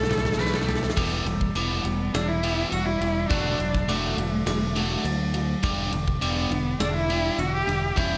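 A biting overdriven guitar dominates this melancholic, cinematic post-rock excerpt, playing a riff up front with spring reverb once it enters at 1.0 s. The opening second is a drum fill on a big rock kit with natural room sound, a medium-tuned snare and a tight kick, joined briefly by a sludgy distorted guitar riff in the background and a very quiet, twangy clean guitar arpeggio, both of which stop around 1.0 s. Over a straight 4/4 at 103 BPM in E dorian, tuned to A4 = 444 Hz, a distant bowed cello carries the melody with expressive vibrato and portamento, touched by tape echo. Behind it a glockenspiel struck with brass mallets adds sparkling, bell-like arpeggios, also with tape echo, while a growly, punchy fingered electric bass anchors the low end. The harmony moves from A7 through Em7, D/E and G6/E, and the whole is set in a light reverb.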